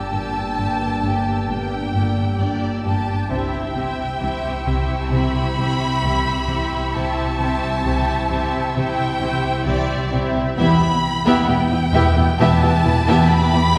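Opening at once on a sustained analog drone with chorus, an evolving, sawtooth-edged pad beneath violas bowing with vibrato, this ominous, eerie suspense film score excerpt at 66 BPM sets a lush violin section melody and a smooth second violin line over a faint high violin texture, with rich cellos and dark, distant double basses in the background, all moving from Gm through C to Em by 10.6 seconds in a reverberant concert hall.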